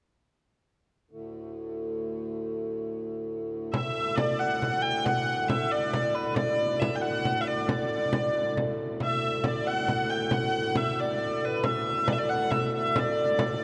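Festive and ancient in mood, this medieval dance moves at 91 BPM counted in dotted quarters, in a straight 6/8 in D major, tuned to A4 = 445 Hz. A pedal harmonium opens alone at 1.1 seconds, holding a low drone between D2 and A2 with a reedy, breathing, mellow tone placed up front. At 3.7 seconds a single wheel-bowed, keyed hurdy-gurdy takes the melody between B4 and G5. Its sound is warm, smooth and even, with a smooth top and a forward presence. A small, bright frame drum enters at the same moment, heard close and dry as it joins the dance. The whole piece sits in a long cathedral reverb with a 5.3-second decay, and all three parts play through to 13.6 seconds, where this passage, cut from a longer piece, ends.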